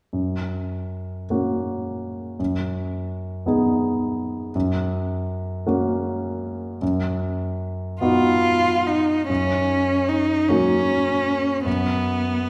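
A warm, intimate grand piano opens this tender, lyrical romantic duo in F# major, unfolding a slow 6/8 at 45-57 BPM in dotted quarters with rubato, its chords turning over F# in the bass with audible action noise and short sustain. At 8.0 s a rich, bowed cello enters up front with the melody, smooth and even with vibrato, and the two play on until this fragment of a longer piece is cut at 12.5 s. A wet concert-hall reverb surrounds the pair, heard from further back in the room.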